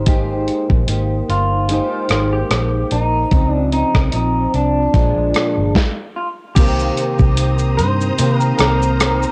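A gently swung groove in four sets an unhurried pace for this sunny, hazy indie and bedroom pop cut from a longer piece. Up front, a dusty sampler-style drum kit plays kick, snare, rim click, hi-hat, shaker and crash. Its thumpy kick and medium-tuned snare carry compressed 12-bit grit and cassette tape colour, re-recorded in a large room. A dark, round, foam-muted electric bass adds punch with transformer saturation. A fingerpicked jumbo steel-string acoustic with old strings sounds woody and full-bodied, treated with ensemble chorus, vibrato and cassette tape, while an electric guitar through a small old amp sings the melody, slightly broken-up and lo-fi in a lush chorus. The chords move from Abmaj9 through Dbmaj9 to Bb7 before a stop from 5.8 to 6.6 seconds, after which a vintage string machine voicing violas brings soft-attack, warbling sawtooth chords over Cm7, all framed by light reverb and a home cassette sound.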